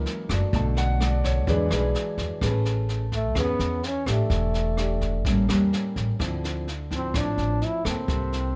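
This bossa nova fragment, cut from a longer piece, moves at 127 BPM in a straight 4/4 with a romantic, breezy mood. A clear baby grand piano with short sustain takes a brief solo turn from 0.0 to 2.4 seconds over chords such as F#7, Bm7 and E7. Thumb-plucked nylon-string guitar with fresh strings supplies the accompaniment, while a woody, growly pizzicato upright bass sits up front as the most prominent part. A brush drum kit with a punchy kick, rim clicks and a high-tuned snare keeps time from a studio room, its top end rolled off. At 3.2 seconds a warm trombone enters with the melody, played in a jazz style with light vibrato and a distant, roomy tone, as the harmony passes through Amaj9, A7b9 and Dm9. Light reverb gives the whole a gentle sense of space.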